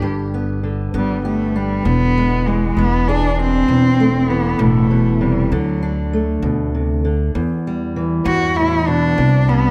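A bowed cello with a nasal, boxy voice sings an expressive solo full of vibrato and portamento from the very start of this hopeful, pastoral acoustic folk excerpt in G major, set in an unhurried 6/8 at 66 BPM, over fingerpicked steel-string acoustic guitar and a woody pizzicato upright bass moving through G, E7, Am/E, D and Em toward a closing Csus2 at 9.2 seconds, all held close yet bathed in a moderate plate reverb that gives the mix a dreamy glow.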